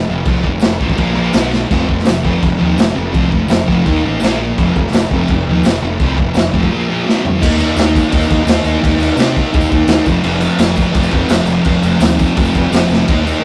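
A driving straight 4/4 pulse at a brisk garage-rock clip sets a rowdy, raw mood in this short cut from a longer piece. A thick, double-tracked fuzz guitar sits up front, playing a picked power-chord riff that moves among F, Bb, B and Eb shapes, while a fingered electric bass, overdriven and fuzzy, holds down the low end beneath it. The acoustic drum kit, captured in a small, pumping room, has a punchy kick, a medium-tuned snare and a gritty, saturated character with a rolled-off top, along with crashes, a splash and toms, and it throws in fills around 1.5 seconds, from 7.1 to 7.4 seconds and at 12.9 seconds. A very quiet, jingly tambourine, close and dry, rides along from 0.6 seconds. The second section arrives at 7.4 seconds on an Eb chord, and the whole thing has the rough feel of a rehearsal-room recording, wrapped in a modest studio reverb and a layer of warm saturation.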